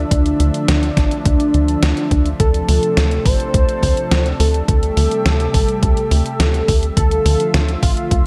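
Synthwave at 105 BPM in D minor, moody and driving, cut from a longer piece and moving through Dmadd9, F and Am7 chords. A velvety, detuned sawtooth lead carries the melody with chorus, delay and vibrato over a lush, thick unison pad that breathes with sidechain pumping. Beneath them sit a tight, dark sequencer bass with a plucky filtered attack, a thumpy electronic kick, and a clean 12-bit drum machine whose hi-hat and fat snare are bathed in gated reverb, all within a light reverb.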